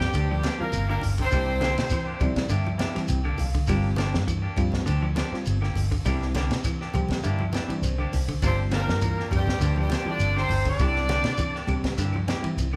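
A straight 4/4 afrobeat groove at 101 BPM in G dorian is driven by a compact cocktail drum kit with a tight kick and high-tuned snare, a round, foam-muted vintage bass, grainy shekere, quiet low-tuned congas and faint woody claves, all moving between Gm7 and C9 with a funky, intense mood. A clean electric guitar picks arpeggios while a hollow-body guitar adds fingered stabs, and a mellow reed electric piano with fast tremolo accompanies throughout and adds fills. A brilliant, punchy horn section carries the melody over raspy, growling tenor and baritone saxophones until 2.3 seconds, returning at around 8.4 seconds, with the band heard live together in one room under moderate large studio reverb.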